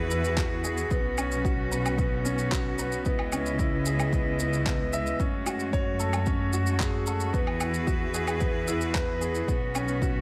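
A clear upright piano sits up front in this piano and strings electronica, playing a woody riff with audible action noise and long sustain, treated with tape echo. Around it, a rich string quartet holds bowed chords with smooth, even vibrato and one player per line, while a dark double bass section adds an expressive, bowed low end with portamento, both breathing with sidechain pumping. A layered kit of electronic shaker, handclaps and woodblock enters at 0.1 seconds, followed at 0.4 seconds by an electronic kick drum, both tape-warm and re-recorded in a small room. At 112 BPM in a straight 4/4, the harmony circles through Eadd9, Bsus2, C#m7 and F#madd9, creating an intimate, hypnotic mood. Light reverb and small room ambience frame this passage cut from a longer piece.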